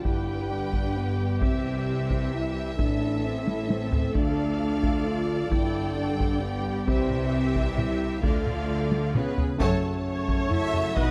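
Pulsing in 3/4 at 132 BPM, this relentless, dark cinematic orchestral cue in D dorian drives close, dry taiko drums struck with heavy sticks, with fills at 3.5 and 8.9 seconds, beneath intense, lush violin sections carrying the melody and a second line, a smooth viola accompaniment, soft-attacked French horns and very quiet, tight trombones holding sustained chords, and bowed cellos and rich double basses anchoring the bass in a lightly reverberant, detailed space, before a full-ensemble accent at 9.6 seconds lands on F#m.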